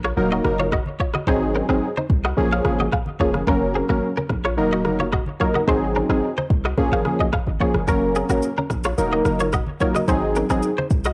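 Afrobeats at 109 BPM in Eb dorian, mellow and smooth, built on a short cycle of Ebm, Ab7, Bbm7 and Gb, with a break running to 7.9 seconds. A twangy, direct-recorded clean electric guitar plays the riff through analog chorus, delay and cassette tape, over a punchy 808-style bass with a sine-and-noise body and an electronic deep house kit of deep kick, rim click and shaker. Round, detuned analog keys with a sub octave and filter sweep sit up front from 0.2 seconds, while thin-skinned, close and dry congas play in the background, the whole cut from a longer piece and carrying a homemade cassette character with light reverb.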